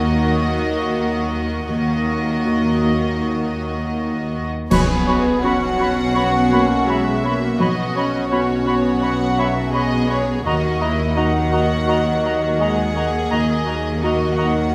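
Moving and uplifting, this cinematic film-score passage, cut from a longer piece, unfolds at 84 BPM in 4/4 with a rubato feel, centred in B major. Two violin sections carry the melody and a second line in a soft, sul tasto, floating tone, while a dark, woody viola section with vibrato, a felt-muted upright piano with audible action noise, and a mellow, vintage French horn section sustaining chords fill out the background. Underneath, a distant cello section and a lush, dark double bass section supply the bass. At 4.7 s, as the harmony moves from D#m to Bsus2, bright cymbals with concert bass drum and very quiet, hard-mallet timpani mark an accent, and a metallic, crisp-attack concert flute, a roomy clarinet and a cor anglais with a smooth top join on second lines until 14.5 s. The chords return to D#m at 10.5 s, and a moderate scoring-stage reverb gives the orchestra a spacious, cinematic glow.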